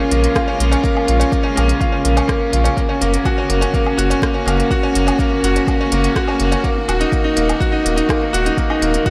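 A woody upright piano riff, up front with digital delay, opens this melancholic, moving piano-and-strings electronica excerpt at 124 BPM, set over distant, lush bowed strings that hold sustained chords with vibrato and sidechain pumping through Bbm, Gb and Ebm. A round sine sub bass, also pumping, arrives with the electronic kit's smooth hi-hats, rim clicks and woodblock, the kit overdriven and re-recorded in a small room. A deep, layered electronic kick enters at 0.4 seconds, and light reverb with digital ambience surrounds the mix.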